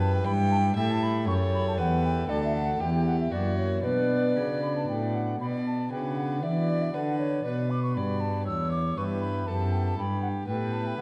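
Set in a dark, reverberant recital hall, this grave, solemn baroque-style sonata movement in B minor moves at 118 BPM in 3/4, with a pure, crisp-attacked wooden flute carrying the vibrato-touched melody over a close, reedy gut-string violin second line, a full principal-chorus pipe organ accompaniment with romantic voicing, and a nasal period-style cello bass sitting up front, before the music shifts into a new section at 5.4 seconds.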